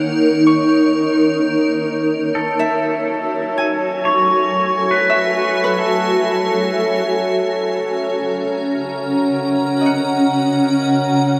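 Reflective and melancholic, this ambient excerpt moves at 69 BPM in a straight 3/4, set in F# minor with chords shifting from D#m7 to F#m7 and back to D#m7 at 7.5 seconds. A bright, cloudy granular pad sits up front with evolving, detuned sustained chords throughout, while a fingerpicked Celtic harp rings out arpeggios in the background and fades out from 2.4 seconds. At that point a twangy pedal steel guitar enters with a brief slide melody played with volume swells, and a pure, glassy glass harmonica adds an ethereal held texture. All of it is washed in huge ambient reverb with shimmer and a cassette tape character.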